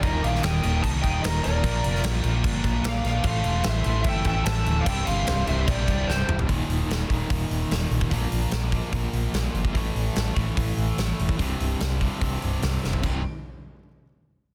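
Hard rock at 147 BPM, powerful and swaggering, built on a punchy, up-front acoustic drum kit with bright cymbals and a round, amped fingered electric bass, while a hollow-bodied overdriven semi-hollow guitar with tremolo and a tight, distorted guitar play the riff in the background. A double-tracked overdriven electric guitar with spring reverb also plays the riff until 6.5 seconds, and a dark lead guitar through a small cranked amp carries the melody over a fuzzy octave-fuzz lead guitar's second line, both with slapback echo, until 6.4 seconds; a drum fill at 6.1 seconds leads into a leaner riff section. The dense, heavily limited mix is dry, with soft clipping adding bite to the snare.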